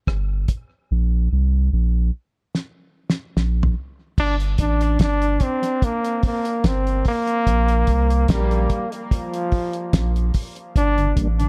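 An echo-heavy mix with light studio reverb frames this spacious, meditative dub reggae, cut from a longer piece and moving at 73 BPM in G minor with a gentle swing. A round, deep sub bass and a cloth-damped, thuddy drum kit with a fat snare and dark cymbals sit up front from the start; the drums are muted from 0.9 seconds, and a fill carries through to 4.2 seconds, where a punchy trombone with vibrato and tape echo takes the solo melody over chords such as Gmadd11 and Bb5. A mellow, flute-like tonewheel organ with slow rotary and chorus vibrato appears only at the very end, at 11.0 seconds.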